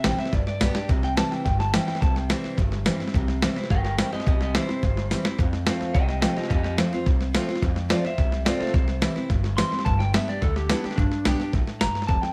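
A straight 4/4 drive at 214 BPM propels this upbeat, rowdy rockabilly excerpt in C major, where a twangy, slightly broken-up electric guitar through a small old amp carries the melody with tape echo over an up-front, full-bodied acoustic dreadnought with audible finger squeak, a woody, dark gut-string upright bass, and a gritty, compressed sampler-style drum kit with a thumpy kick that plays fills at 0.8 and 5.1 seconds, all in light reverb as the chords move from G to C, F, back to C and G.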